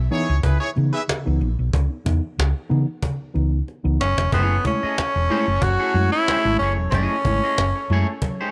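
A dry funk excerpt with a driving, hypnotic pull, built on a straight four-beat groove. A dark, round hollow-body bass sits up front from the start, joined by a woody, compressed cajon with hard hands and faint snares, mellow electric piano stabs heard through its built-in speakers, and a clear, punchy horn section carrying a second line in the background. The opening is a break over C#m9, and a drum fill on the cajon runs from 3.0 seconds until the next section begins at 4.3 seconds. A raspy, gritty tenor saxophone enters up front at 4.0 seconds with a forceful lead in a pop style, colored by light vibrato. A bright, picked clean electric guitar joins with accompaniment, touched by spring reverb, as the harmony moves to F#m9.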